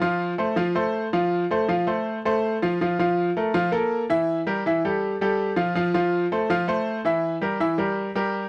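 A straight 4/4 pulse at 162 BPM drives this short Latin excerpt in F major, tuned slightly high to A4 = 441 Hz. Its mood is festive and sunny. A solo grand piano carries the whole 8.5 seconds, moving between E3 and F5 over changes from F to Bb5, Edim, Fadd9 and Fmaj7, with Edim returning at 7.2 seconds. The piano's tone is bright and brilliant and feels intimate, with long sustain and audible action noise. It sits up front, and a touch of light reverb colours it. The sound is dry and close, like a 1970s studio recording, and the clip is cut from a longer piece.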